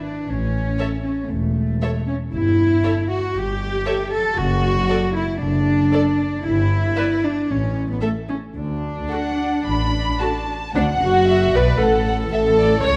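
The recording sits in a dark, warm production with a moderate scoring-stage reverb that gives the string orchestra a natural halo. This quick classical-period movement feels urgent and dramatic, heard as a short cut from a longer piece. A dusky cello section opens at 0.0 seconds, close and up front, and a clear, floating double bass section joins at 0.3 seconds to anchor the low end. At 0.8 seconds the upper strings arrive together: a violin section carries the high melody with light vibrato, a second violin section sings a lower line with vibrato, and a rich, pure viola section fills in the accompaniment. Every section is bowed sul tasto with soft attacks, lending the ensemble an intimate, veiled tone even as the harmony moves from A through A7 over G and D over F# toward a close on D.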